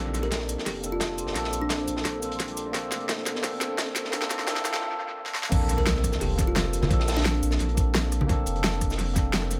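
A straight liquid drum and bass groove drives this dreamy, lush passage, built from a knocking electronic kick, an up-front pop kit with fat snare, crisp hats, cabasa, rim clicks and crash, and a gritty, saturated breakbeat kit with a rolled-off top. Underneath, a deep, round sine sub bass holds steady as a clean tine electric piano plays through phaser and dub echo, while a very quiet, shimmering granular pad and a woody, tape-echoed kalimba hover in the background through a filtered build-up with a drum fill and a distant riser. After a brief break, the drop lands at 5.5 seconds with an impact, and ringing hard-hand congas with analog delay join at 6.8 seconds, all set in an echo-heavy mix with light reverb and small room ambience.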